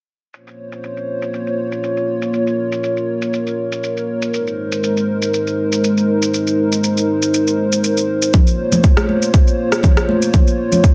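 Afro house at 120 BPM in Bb minor, this warm, earthy excerpt opens on a dark, detuned analog pad with a slow attack and chorus, pumping against the sidechain as it holds chords moving from Bbm to Ab, while an overdriven electronic shaker and rim click tick along with a light swing. At 8.3 seconds a deep, overdriven kick drum lands up front, joined by bright, high-tuned congas with a saturated, hard-handed snap. A moderate plate reverb gives the mix a digital sense of space.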